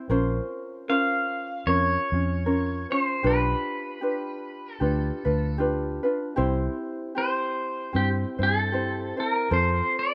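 A lazily swung 76 BPM Hawaiian groove in 4/4 sets a sunny, languid mood for this brief cut from a longer piece, with mellow fingerpicked ukulele and a round, punchy, foam-muted vintage bass underpinning a bright, twangy pedal steel guitar that enters at 0.9 s with slide and volume swells, all drifting from Bbmadd9 through G7/B and C to F in a rough home-demo mix with light small-room reverb.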